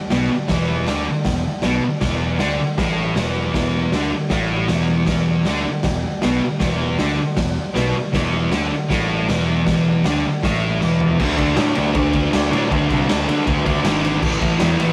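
Menacing and swaggering, this garage rock excerpt at 157 BPM sets a thick, double-tracked fuzz guitar riff over an overdriven, round picked bass and a gritty, saturated drum kit with a punchy kick, moving from E5 to D5 after a drum fill at 10.8 seconds, all captured as a rough rehearsal-room recording with light reverb.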